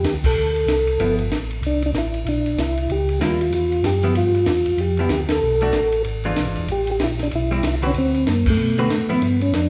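The percussive tonewheel organ carries the melody in this brisk, swinging soul jazz organ trio excerpt, its soft, flute-like tone colored by second-harmonic percussion, chorus vibrato and a slow rotary speaker. Beneath it, a second tonewheel organ holds down the bass, round and lightly overdriven with audible key click, sitting up front through its own slow-turning rotary speaker. A compact cocktail drum kit adds dry, acoustic drive with dark cymbals, a high-tuned snare and a punchy kick, and the band hits accents together at 0.2, 5.3 and 8.4 seconds. A vintage hollow-body jazz guitar, clean, picked and compressed, slips in briefly at 1.0 seconds before settling into accompaniment from 3.2 seconds. The bluesy, greasy harmony moves through rich extended and diminished chords, all heard in the moderate reverb of a recital hall.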